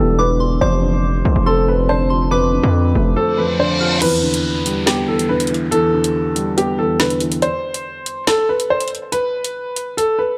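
This cold, dark drill excerpt opens with a concert grand piano playing the melody, its intimate tone carrying audible action noise and softened by a low-pass filter and tape echo, over a boxy, mellow second grand piano in the lower register and a deep, very quiet ambient pad holding sustained chords. A saturated, aggressive 808-style bass hits hard beneath them, while a soft, pure FM bell adds a high second line with chorus, phaser and tape echo, all as a filter sweep runs through the opening over Em7 and F6 harmony. The bass drops out at 3.2 seconds, and an electronic downlifter and reverse cymbal lead into a half-time break at 4.0 seconds. There a drill kit enters up front with a woody snare, metallic hi-hats and crash cymbal, carrying a tape-warm tone as the harmony returns to Em7. From 7.4 seconds the chords fall away, leaving the melody piano and drums in light digital ambience.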